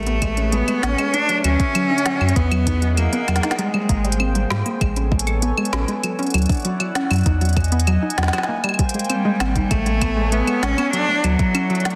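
A clear, focused cello carries the melody up front with vibrato, its bowed line sounding from the start to 4.5 seconds and returning from 9.1 seconds, trailed by delay. This is a wistful, playful IDM passage at 98 BPM in A major, drifting through a cycle of Amaj9, Dmaj9, Emaj9 and G#maj9 chords. Beneath it, a warbling, nostalgic tape-like pad holds dark, detuned sustained chords with chorus and its own reverb, while a dusty pluck spins mellow, lo-fi arpeggios through chorus and tape echo. A round sine sub bass sits deep and up front, and the drums pair a deep electronic kick with an organic electronic kit of claves, smooth hats and a woody snare, the kit soaked in tape echo and both re-recorded in a large room. An echo chamber reverb lends a digital ambience, and the master is dense and heavily limited, with the clip cut from a longer piece.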